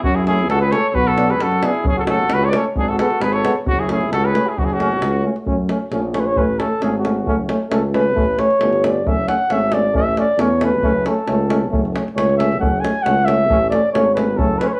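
A breathy cornet opens this restless, virtuosic Balkan brass band fragment, carrying the melody up front with vibrato, scooped notes and a whispered, intimate touch under plate reverb. A mellow flugelhorn with a smooth top plays a second line beside it, while a warm, distant tuba holds the bass with light vibrato and a tight, close davul drives the brisk two-beat pulse. From 0.3 s, a bright, vintage trombone and a clear euphonium, set back in the background, fill in the accompaniment. The cornet drops out at 5.3 s, and from 5.5 s the flugelhorn takes a solo over chords that swing back and forth between two harmonies. The whole band sits in a small room with a worn, warbling cassette-tape sound whose pitch drifts throughout.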